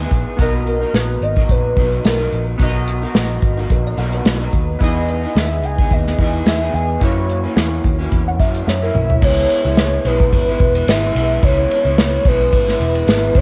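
A dark, slightly broken-up electric guitar through a small old amp opens this laid-back, dreamy bedroom pop fragment, bathed in lush chorus, vibrato and cassette tape, over a round, foam-muted vintage bass. An unplugged acoustic drum kit, played with bundle sticks and sitting up front with a punchy kick and medium-tuned snare, sets a lightly swung 109 BPM groove in 4/4, tuned to A4 = 436 Hz. A warbling, nostalgic lead carries the melody with a soft attack, sustained notes and portamento, drenched in chorus and analog delay, while glossy, detuned retro synth keys with filter sweeps add bright chords through Bmaj7, Emaj7 and F#7. A mellow, woody kalimba appears in the background in two brief spots, at 3.7 and 8.3 seconds, and a drum fill at 8.7 seconds leads into a new section where the synth keys drop out and the harmony settles on C#m7. A light reverb and small room ambience give the whole home cassette recording an intimate, hazy feel.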